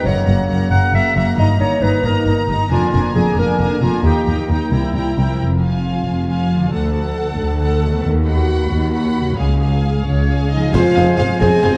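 Opening on a lush bed of bowed strings, with violins carrying the melody over violas, dark cellos and woody double basses, this heroic, adventurous film-score excerpt moves in 6/8 at 90 BPM. A mellow clarinet, a background trombone section and a very quiet, ringing harp sound from the outset, before a bright, airy flute and close-miked French horns enter at 10.1 s and a distant oboe, mellow tuba, snare, bass drum and bright clash cymbals arrive at 10.7 s, all set in a wet scoring-stage reverb.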